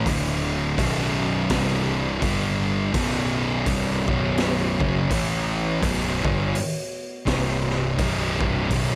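Gritty and close, this short cut from a longer stoner and doom metal piece sits in a small room, with a raw garage drum kit pushed up front: a boomy kick, a high-tuned snare and hi-hat, saturated and mid-forward with a rolled-off top. The mood is heavy and ominous, carried by a swung 4/4 feel. Two thick fuzz guitars pick a low riff through power chords over a Bm moment, one warm and distorted, the other darker and set in the background. A fuzz-laden electric bass, picked and punchy, drives its overdriven tone underneath them. From 1.0 seconds a very quiet, deep rumbling drone of detuned triangle and sawtooth tones holds sustained chords, warbling and vintage in character, with slow attacks, long releases and its own reverb.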